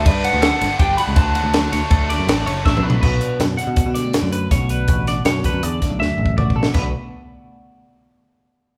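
Math rock with a midwest emo tint, intricate and wistful in an odd metre, opens with a lo-fi, slightly broken-up guitar melody over bright twelve-string arpeggios with phaser, a double-tracked overdriven riff, a round picked bass and a dry, punchy cocktail drum kit up front. Then at 3.0 seconds a twangy twelve-string accompaniment with spring reverb joins the arpeggios, bass and drums as the chords move from Gmaj7 and Dmaj7 to Bm7, the live band sitting in a large studio room.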